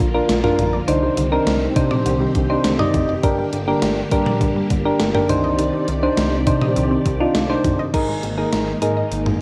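A home cassette recording with light reverb and a digital ambience gives this brief synth-pop cut, taken from a longer piece, a cool, driving feel in straight 4/4. Up front, a gated 80s digital drum machine hits with a thumpy kick, a gated-reverb snare, hi-hat, toms and crash, overdriven and re-recorded in a large room for an electronic, sampler-style punch. Soft, round electric-piano-like synth keys, also up front and treated with chorus, play mellow accompaniment, while a smooth, sawtooth-and-square synth bass holds the low end. A shimmering, vintage string machine with ensemble chorus lays slow-attack violin chords underneath, and a lush, detuned unison pluck adds very quiet arpeggios with a ring-modulated edge. The harmony moves through Bb, Cmadd9 and Gm, then shifts to Absus2 at 7.9 seconds as a new section begins.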